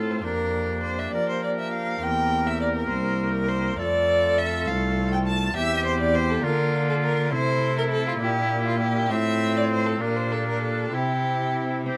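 A moderate studio reverb gives this 12-second extract from a baroque-style sonata movement a gently resonant space, tuned to A4 = 438 Hz. In a flowing, serene 6/8 at 68 BPM in F major, a single bowed violin with a rich tone leads the melody with expressive vibrato and portamento, while a clear solo oboe with light vibrato carries a second line. Beneath them, a pipe organ's nasal cornet solo stop, with chiff and tremulant, supplies continuo accompaniment, and a smooth, evenly bowed cello with full-bodied vibrato holds the bass up front.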